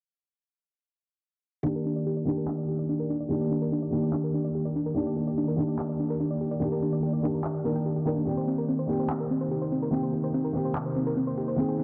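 A felt-muted upright piano sits up front in this playful, euphoric future bass excerpt, its dark, intimate tone carrying audible action noise and a short sustain through a tape echo as it sets out accompanying chords from 1.6 seconds. Just after, a thumb-piano-like synth pluck spins arpeggios with a round, tine-like attack, a faint noise layer and chorus, while a filter sweep moves across its sound. From 2.6 seconds an ethereal, airy pad of detuned unison voices with a sub octave fades in slowly in the background, its long release softened by ensemble chorus and its own reverb. Electronic handclaps, tape-tinged and set in a small room reverb, mark the half-time feel from 2.5 to 10.8 seconds. Harmony rests on an Ebmaj7 before turning to Cm7, all wrapped in a dense, heavily limited master with a low-pass filter and light reverb.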